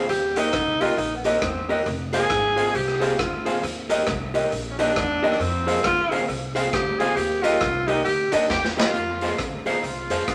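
A wet studio reverb wraps this bouncy, upbeat ska excerpt, cut from a longer piece, moving at 136 BPM in 4/4 with a swung eighth-note feel. A punchy, distant tenor saxophone with vibrato carries the melody as a solo over alternating Eb and Fm chords, sitting up front until a drum fill at 8.5 seconds hands the line to a roomy horn section with light vibrato for the closing stretch. Beneath it, a dark, clean hollow-body jazz guitar plays picked accompaniment through tape echo, while a very quiet upright piano adds intimate, slightly detuned stabs with audible action noise until 8.9 seconds. A woody, thumpy pizzicato upright bass holds the low end, and a raw garage drum kit of hi-hat, kick, rim click and snare sounds saturated and gritty, with a pumping stone-room character, a rolled-off top and its own tape echo. A grainy cabasa is barely audible in the background throughout.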